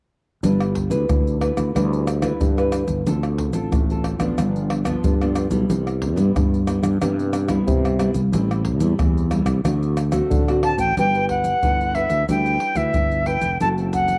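A straight, lively samba-and-choro groove in four runs through this short passage cut from a longer piece, driven by an up-front, close-miked batch of egg shaker, tight surdo, pandeiro and tamborim struck with hard hands. A growly, direct-amped fretless electric bass sustains underneath in the low register, sitting just as far forward, while a fingerpicked nylon-string guitar with old strings adds woody, classical-style accompaniment carrying a cassette-tape character. The mood is playful throughout, and at 10.6 s a bright, reedy jazz flute enters on top with an airy metal tone, soft attack, vibrato and rolled-off highs, also tinged by cassette tape. The flute arrives just before the move into a new section at 11.0 s and carries the melody to the end at 14.2 s. The whole home-recorded cassette take sits in a moderate spring reverb.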